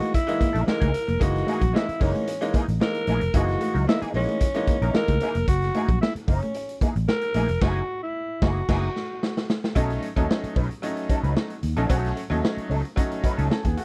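Funk with a playful, strutting mood, led up front by a raspy, growling alto saxophone over a punchy, saturated garage drum kit and a round, foam-muted electric bass that enters at 0.4 seconds, while a hollow-body jazz guitar plays through wah, a slightly broken-up electric guitar riff sits in the background, and a bright, slightly detuned upright piano adds stabs, with a band accent and drum fill leading into the change of chord at 9.8 seconds, captured as a dry, close 1970s-style studio recording.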